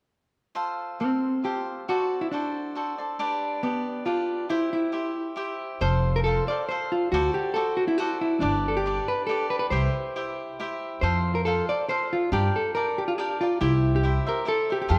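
Romantic and festive, this mariachi-flavoured Mexican folk passage moves at 138 BPM in a lilting 3/4 with a light swing, set in F major and cut from a longer piece. A crisp, picked acoustic cavaquinho opens the accompaniment at 0.5 seconds, sitting up front though a little lower in level than the other parts. At 1.0 seconds a dark, clean, fingered electric hollow-body jazz guitar takes the melody, carrying it through the middle register. When the second section begins at 5.8 seconds, a woody pizzicato upright bass with steel strings joins in the low register and stays until the close. The harmony circles through F, D7, G and C before turning to Gm and C near the end, and a moderate concert hall reverb of about 2.2 seconds gives the up-front parts a sense of space.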